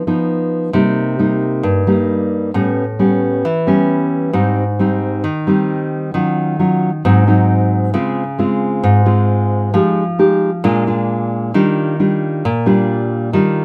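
A straight, even 4/4 pulse carries this breezy, relaxed bossa nova passage, cut from a longer piece. A single nylon-string guitar plays alone throughout its 13.6 seconds, spanning G2 to G4 with a thumb-plucked, classical touch. Its fresh strings give the acoustic tone a warm character, and the guitar sits up front in the mix. The harmony opens on a rootless G7b13 and moves through lush extended chords such as Cm7, A9 and Dbmaj7 before settling on Ebmaj9 at 11.5 seconds. A moderate large-studio reverb, with a decay of about 1.2 seconds, surrounds the instrument with a gentle sense of space.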